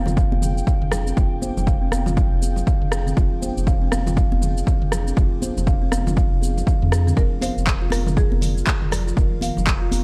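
This driving, earthy afro house cut in F dorian opens with an ethereal, airy pad of detuned sustained chords sitting in the background with chorus, reverb, phaser and sidechain pumping. A buzzing, woody kalimba plays arpeggios through a low-pass filter sweep and digital delay, while a round, deep analog bass pulses under the pumping. At 120 BPM in 4/4 with a swung sixteenth feel, a punchy, overdriven electronic kick sits up front, joined by an afro-pop kit of cabasa, handclaps, dark hats, rim click and toms, plus bright, hard-handed congas further back. The harmony rests on Fm69 until 7.2 seconds, when it shifts to Bbsus4/F and a dry, hard-mallet marimba adds a short buzzing melody with delay until 8.9 seconds. The production is dark and warm, with small room ambience.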